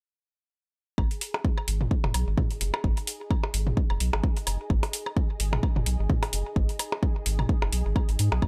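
Minimal techno at 129 BPM with a light swing, cool and sparse in mood, cut from a longer piece. A punchy kick and a round, deep analog bass with sidechain pumping sit up front from 1.0 seconds, with metallic hi-hats, also up front, entering at 1.1 seconds. They are joined by tape-warm percussion blips and toms through delay and a bubbling, resonant texture of random filter steps in the background. At 2.3 seconds an ethereal, airy pad with ensemble chorus and reverb fades in behind the groove, all set in a digital ambience.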